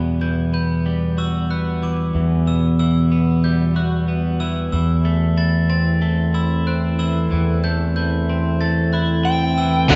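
A compressed, up-front twelve-string electric guitar picks clean arpeggios from the start of this brooding, cathartic post-rock piece, which moves at 93 BPM in a straight 4/4 in A dorian. Beneath it, a growling fingered electric bass with overdrive holds the low end, while a glockenspiel struck with brass mallets adds sparkling, bell-like arpeggios high above. At 1.7 seconds a deep, moody ambient pad fades in behind them, its detuned sawtooth layers and sub octave smeared by chorus and its own reverb as it sustains chords over the shift from Emadd9 to Am/E. The release arrives at the very end: a dark, overdriven slide guitar takes up the melody at 9.2 seconds, and at 9.9 seconds a thick, bright fuzz guitar surges forward with a riff, joined by an overdriven semi-hollow guitar further back. The whole passage sits in a wet recital-hall reverb with a muted, rolled-off top end, like a band playing in a church or concert hall.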